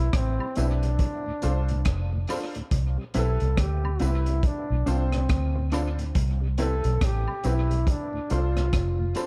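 Roots reggae with a laid-back, uplifting mood, swinging gently over a Cmaj7 to Dm7 vamp, led by a clear solo trombone with light vibrato and dub echo, backed by a clean tonewheel organ and a mellow, compressed electric guitar that also trail dub echo. A round, foam-muted fingered electric bass sits up front beside a crunchy, saturated breakbeat kit of hi-hat, punchy kick and rim click, while a bright, woody upright piano with audible action noise adds stabs from 0.6 seconds, and woodblock, tambourine, egg shaker and group handclaps sit close and dry in the background. The production is dark and dry, cut from a longer piece.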